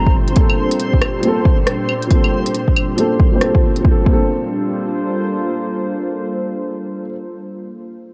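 Swung sixteenths at 138 BPM drive this nocturnal, wistful future garage fragment in G minor, where a deep, overdriven electronic kick sits up front beside a produced electronic kit of claves, smooth hats and rim clicks until the kit drops out at 3.8 s and the kick at 4.2 s, while a woody, worn upright piano with audible action noise and sidechain pumping carries a filter sweep through its first 3.8 s, a warbling, lo-fi tape-like pad with chorus holds a Gm11 chord, and a reversed, granular texture swells dreamily in the background, set in light reverb with a cassette-tape character.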